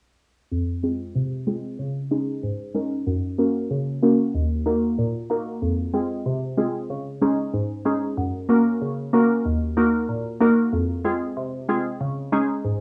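Sultry and bouncy, this dancehall passage is cut from a longer piece and moves at 94 BPM in a straight 4/4, set in F phrygian with tuning at A4 = 439 Hz. A single glassy wavetable pluck carries the accompaniment from 0.5 to 12.8 seconds, sitting up front and spanning Eb2 to Bb4. Its crystalline, detuned unison tone has a warbling, vintage edge, with fast attacks that decay, a chorus sheen, and a low-pass filter that sweeps across the whole passage. The harmony cycles through Fm, Dbsus2, Gb and Ebm, returning to Fm at 5.6 and 10.7 seconds before settling on Dbsus2. The sound carries the intimacy of a home cassette recording, with a short, moderate booth ambience wrapped around the pluck.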